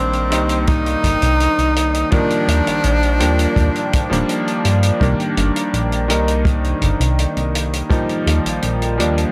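A straight 4/4 pulse at 83 BPM from a punchy, rolled-off acoustic kick and a natural small-room hi-hat carries this woozy, melancholic vaporwave excerpt in C minor, where a bright tenor saxophone with vibrato and tape echo sings a short pop-style solo melody until 4.6 s over an up-front, cutting electric grand piano with clangy bass, subtle chorus and tape echo, a glossy chorused pulse-and-sawtooth synth bass, and a very quiet, warbling, detuned tape-like pad drifting through Cm9 and Ebmaj9 chords in light reverb.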